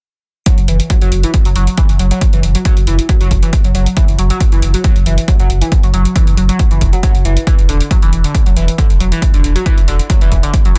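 Driving peak-time techno with a hypnotic, industrial mood, this straight 4/4 excerpt is anchored by a punchy, up-front kick from 0.5 to 10.6 seconds, metallic hats pumping against it, a thick, deep sub bass of tube saturation and low-pass filtering, and a gritty, screaming, guitar-like synth riff coloured by phaser, delay and vibrato, all pressed into a dense, heavily limited modern master over an Esus2/F# chord that gives way at 7.5 seconds.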